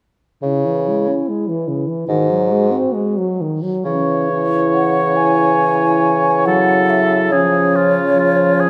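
A slow, solemn wind-quintet excerpt in C# minor opens at 0.4 s with a mellow French horn and a clear, present bassoon up front, and a clarinet sitting in the background. Together they move from C#m to G#7 at roughly 63-76 BPM in a rubato, melancholic 4/4. At 3.9 s a warm oboe with light vibrato joins as a second line, and at 4.7 s an airy, hollow concert flute takes the tongued melody with vibrato above it, before the harmony turns to a C# major chord at 7.3 s, all set in a moderate scoring-stage reverb.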